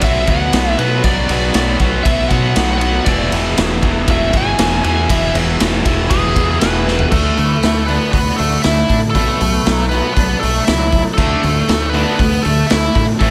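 Brooding and cathartic, this excerpt of quiet-loud alternative rock moves at 118 BPM in a straight 4/4, opening with a biting, bright lead guitar solo over crunchy and scooped overdriven rhythm guitar riffs, a growling, punchy fingered bass with overdrive, and a raw garage drum kit that sits up front with a saturated, gritty sound and a pumping stone-room character. After a drum fill at 6.9 seconds, the harmony shifts from Bm and E to Dadd9, Bm7 and Dsus2, and a twangy, lo-fi guitar through a small old amp adds tremolo and analog delay arpeggios in the background from 7.1 to 11.6 seconds while the scooped guitar drops out until 11.2 seconds. Light reverb and small room ambience frame the whole performance.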